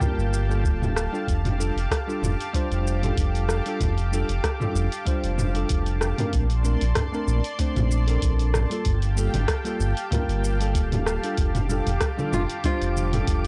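A lightly swung groove from an overdriven deep house kit of hi-hat, rim click, shaker and toms rides over a deep analog electronic kick and a round, up-front analog bass in this relaxed, sunny sunset chillout excerpt: a bell-like tine electric piano with analog delay and a lush, warbling chorused pad carry the harmony, vintage background congas slip in at 11.7 seconds, an airy, wind-like noise layer enters at 12.1 seconds, and a fingerpicked nylon-string guitar with tape echo and finger squeak arrives at 12.3 seconds, the whole captured on a dry, gritty, cassette-toned recording.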